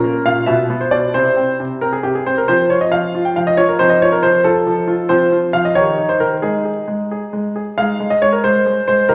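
A wet recital-hall reverb and a vinyl crackle surround a clear, natural grand piano placed up front, playing solo from Bb2 to G5 in this short cut from a longer piece. The classical-period sonatina moves in a straight 6/8 at 91 BPM, elegant yet restless, its harmony passing through C, F and Eb7 before settling into Ab major at 5.1 seconds. A new section begins at 7.8 seconds, and the fragment ends at 9.1 seconds.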